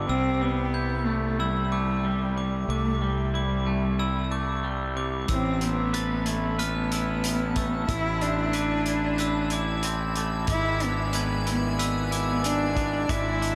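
A straight 4/4 pulse at 92 BPM carries this brooding, cathartic post-rock excerpt in A minor, its loose indie drum kit arriving at 5.3 seconds with a punchy kick and hi-hat from a small-room, mid-forward sound. From the opening, a sparkling glockenspiel struck with brass mallets and a twangy, scooped electric guitar trace delayed arpeggios, the bell-like tones ringing high above the guitar's clean, compressed picking. Underneath, a fingered electric bass growls with overdriven fuzz, sitting up front in the low register. A single bowed cello carries the melody, nasal and boxy yet smooth, with light vibrato and a touch of delay. At 6.0 seconds an icy, crystalline glass pad eases in behind everything with slow-attack sustained chords, chorus and its own airy reverb, while the whole dreamy mix is soaked in a lush hall reverb as the harmony moves from C6 through Amadd9 to E7/G#.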